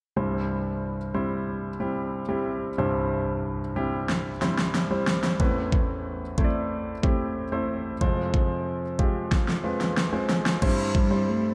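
Piano-driven pop with a hopeful, anthemic mood, cut from a longer piece, where an intimate concert grand with audible action noise, deep bass and a slapback echo carries the accompaniment from the start, over chords moving from C through Amadd9 and Fm back to C. An overdriven, electronic-sounding drum kit with a knocking kick, fat snare and crash cymbal sits up front from 4.1 seconds, its fills arriving at 4.1 and 9.3 seconds. A dark, woody bowed cello played sul tasto with vibrato enters only at 11.0 seconds, all within a lush hall reverb that gives a big arena sound.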